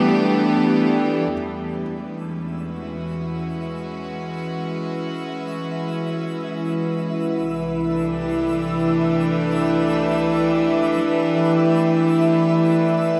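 This serene, warm ambient fragment, cut from a longer piece and moving in free time, opens with a bright, earthy chamber string section holding bowed chords up front, alongside a very quiet felt-muted upright piano whose soft, boxy arpeggios stop at 1.8 seconds. At 1.6 seconds an evolving analog drone enters, its detuned sawtooth and pulse-wave tones thickened by chorus and sitting up front with the strings. A twinkling granular texture joins at 2.2 seconds, a sparkling FM layer with an octave-up shimmer placed in the background. The strings and the granular texture both fade in across the rest of the passage, each carrying shimmer reverb, while the harmony moves from A5 through E6, C#m7 and Cmaj7 before returning to A5. The whole passage rings in a vast, echoing cathedral space with a 5.0-second decay.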